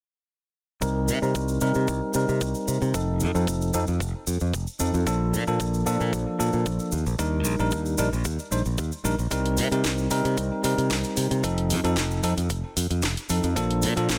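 Nearly dry, this cosmic, sleek nu-disco excerpt at 113 BPM in C dorian opens at 0.8 seconds with a clean, bell-like tine electric piano carrying sidechain pumping, tape echo and a filter sweep, a growly, punchy fingered electric bass with tube saturation, a thumpy sampler-style electronic kick and a distant cabasa over Cm7, F7, Bbmaj7 and Ebmaj7, before an overdriven house drum kit with cracking snare and bright hats joins at 9.3 seconds.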